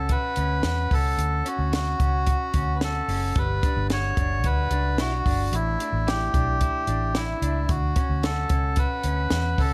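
Jangly indie pop at 111 BPM in D major, breezy and nostalgic, this brief excerpt features a reedy, breathy melodica carrying the melody up front through digital delay, a bright, slightly broken-up guitar picking twangy arpeggios through a small old amp, a dark, foam-muted fingered bass sitting round and punchy, and a dry compact cocktail kit with a high-tuned snare and hi-hat entering at 0.1 seconds, all in a small room over a Dmaj7, Gmaj7 and A7sus4 progression.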